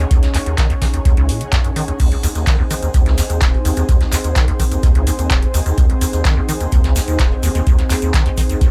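A dry, gritty hardware recording with light reverb carries a playful, raw acid house excerpt at 127 BPM in 4/4, built on an Ebm7 chord: an up-front, squelchy square-wave acid bass riff with a resonant filter sweep, tube saturation, chorus and tape echo drives the groove over a deep, tape-toned electronic kick and a booming analog drum machine with metallic hi-hats, handclaps and crash cymbal, while a thick, detuned sawtooth pad holds sustained chords and an ethereal, airy pad adds texture, both with sidechain pumping, and a very quiet brushed jazz kit with a high-tuned snare joins a grainy, distant tube shaker that enters at 2.0 s in the background.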